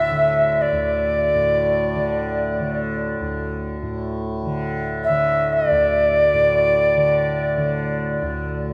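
Spacious and haunting, this free-time world meditation excerpt sets an airy, straight-toned Native American-style cedar flute up front, its tongued, expressive melody hovering between D5 and E5 and trailed by tape echo, over a softly plucked, buzzing, shimmering tanpura drone, all awash in a long plate reverb.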